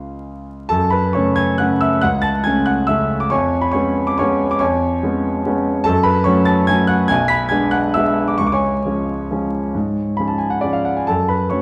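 Through a dark haze of vinyl crackle and the lush reverb of a recital hall, this bittersweet, elegant classical waltz in 3/4 features a solo grand piano, present, polished and up front, playing with rubato from low bass to high treble over a minor-key progression that turns toward a diminished chord before resolving, in a brief cut from a longer piece.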